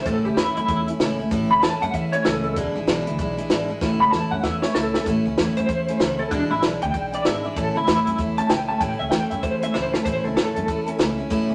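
Rowdy and retro, this swung rockabilly fragment of a longer piece charges along at 192 BPM in A major, moving between A and E7. Up front, an electric guitar through a small old amp carries the melody with a twangy, slightly broken-up, lo-fi bite and a tremolo shimmer, then takes a solo from 5.1 s. Beneath it, a picked steel-string dreadnought acoustic guitar picks out the accompaniment with fresh, full-bodied brightness and the odd finger squeak. A pizzicato upright bass with gut strings adds a woody, dark thump. A compact cocktail drum kit, natural and tight with a high-tuned snare and tight kick, drives the hi-hat groove and throws in fills at 3.8 s and 9.7 s, all set in a wet studio reverb.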